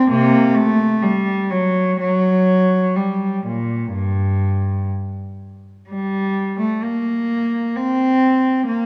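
Classical, baroque-style suite movement for unaccompanied cello in G minor, serene yet dance-like, moving at 63 BPM in 4/4 with a flexible rubato feel and tuned to A4 = 438 Hz. A single bowed cello with a gut-string tone carries the whole brief excerpt from G2 to C4, its sound nasal and reedy with light vibrato in period style, set up front within a wet concert-hall reverb. The opening phrase gives way to a new section at 5.9 s, which runs until the cut at 8.9 s.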